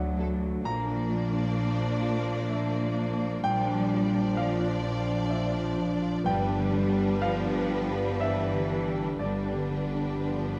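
Soaked in the reverb of a scoring stage, this dark, warm orchestral recording is a short cut from a longer cinematic film cue, tender and uplifting in mood. It moves in a slow 3/4 at around 63 BPM with a loose, rubato feel, its harmony shifting from D to Bb and later to G at 6.3 seconds. From the start, a polished grand piano plays accompaniment in the background. A ringing, fingerpicked concert harp spins arpeggios, and a distant, roomy French horn section holds soft-edged sustained chords. A close, even cello section and a focused double bass section carry the low end. At 0.2 seconds, a violin section enters with the vibrato-laden melody and a smooth top, joined by a second, soft-attacked violin line and a lush viola section sitting at a distance in the background.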